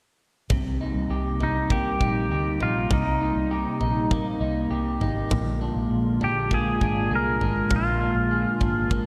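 Dream pop with a melancholic, hazy mood, this brief cut opens at 0.5 s with a swirling, detuned sawtooth pad holding phased, chorused chords. Beneath it sit slightly broken-up electric guitar arpeggios drenched in lush chorus and digital delay, a dark, round, foam-muted fingered bass, and a huge arena kit of punchy kick and toms. At 1.4 s a clean, up-front pedal steel guitar enters with a fingerpicked slide melody and volume swells, gliding over a Cm7 to Bb7 change. The whole mix sits in a bright 1980s-style digital production bathed in a lush hall reverb.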